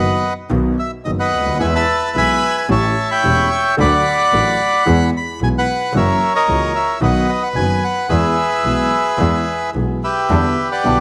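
A reedy, up-front bandoneon carries the melody through this playful, nostalgic tango excerpt, its rubato phrasing moving over a concert grand piano with intimate action noise, deep bass and short sustain, and a bowed double bass that sounds biting, nasal and earthy. The harmony travels from B through E, A7, D and F#7 before settling on a darker Em7 at 10.3 seconds, where a second bandoneon, smooth and in the background, adds low stabs. A moderate echo chamber reverb gives the small ensemble a natural sense of space.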